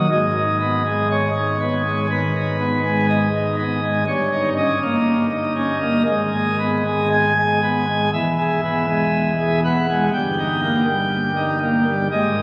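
Moving freely in an unhurried 4/4, this grave, solemn classical chorale unfolds on a solo pipe organ, its full plenum with brilliant mixtures and romantic voicing placed up front and spanning deep pedal tones to a high treble. The chords hang in a wet church reverb lasting about 3.8 seconds, heard through the crackle of a very old 78 rpm record. This 12.4-second passage is cut from a longer piece.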